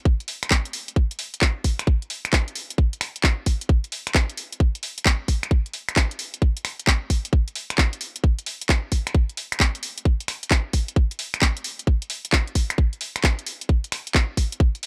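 A tight, layered electronic kick drum sits up front from the opening moments of this UK garage excerpt, running through to 14.7 seconds. Alongside it, a garage drum kit of finger snaps, handclaps and hi-hats comes in at 0.2 seconds. Its hats carry a warm tone, and the whole kit has a small-room character from being re-recorded. The 16th notes are swung at 66%, giving the 4/4 groove a bouncy, late-night feel. Both drum parts are layered and produced, and the excerpt stays within a single section. The sound is dry and gritty, with little reverb, as if captured on hardware.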